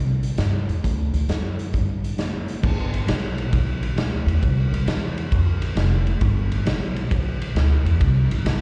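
Electric blues shuffle with a soulful, laid-back swing, heard as a live gig through the venue's PA with a recital-hall sheen and a faint mains hum. A woody, growly pizzicato upright bass with steel strings starts the fragment at 0.0 seconds. A raw garage drum kit joins at 0.2 seconds: dark, gritty and saturated, with a rolled-off top, a punchy kick, a medium-tuned snare, hi-hat, ride and crash sitting up front in a bright stone room.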